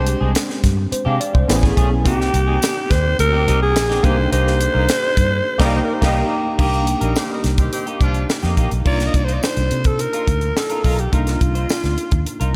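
A big arena sound bathed in lush hall reverb frames this bittersweet, slick slice of polished 1980s jazz-funk pop at 106 BPM, where a raspy, breathy alto saxophone with slapback echo carries the melody up front over a worn, slightly out-of-tune tine electric piano and a dark, picked clean guitar riff (both with analog chorus), a round, foam-muted fingered bass, a dry funk kit with a high-tuned snare and tight kick, and a faint jingly tambourine, while the band hits an accent from 4.3 s, a clear background horn section adds a second line from 5.6 s to 8.2 s, and the harmony shifts into C dorian at 8.9 s.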